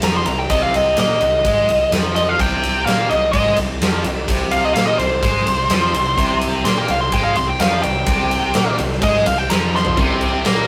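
A straight, driving 4/4 pulse anchors this aggressive hard rock passage, cut from a longer piece. Up front, a dark, nasal lead guitar with a parked wah and overdrive plays the solo melody from the start until 10.0 seconds, backed by two picked, distorted rhythm guitars set further back, one of them scooped and compressed. A growling, punchy fingered bass and a huge arena drum kit, with a punchy kick, glinting cymbals, snare and toms, keep the riff moving, and a drum fill arrives at 9.7 seconds. A very quiet tonewheel organ slips in at 2.4 seconds with sustained chords, its key click and slow rotary swirl adding a shouting edge. A double-tracked, overdriven guitar takes up the riff at 10.0 seconds, and the whole take carries a rough rehearsal-room character with tube saturation and a moderate stone-room reverb.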